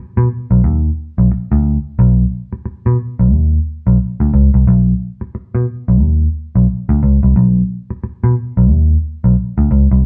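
Swung sixteenths in 4/4 drive this playful, energetic funk passage, cut from a longer piece, where a vintage muted electric bass plays alone from 0.2 s to 10.0 s, picked in a low register. Its tone is dark, round and foam-muted, amped and sitting up front. A wet studio reverb and the sound of a band playing live in one room surround it, with the top end rolled off above 10.5 kHz.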